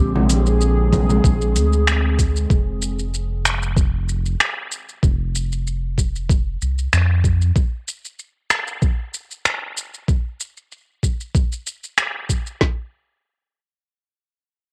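An airy, breathy pad with chorus and cassette-tape grain opens this wistful sunset chillout excerpt alongside a round, deep analog bass moving through a filter sweep, while distant, ringing congas pass briefly, a deep house kit adds metallic hats, finger snaps and shaker, and a smooth R&B kit with knocking kick and woody snare sits up front on tape until about 12.8 seconds, all set in light digital ambience with a home-cassette character.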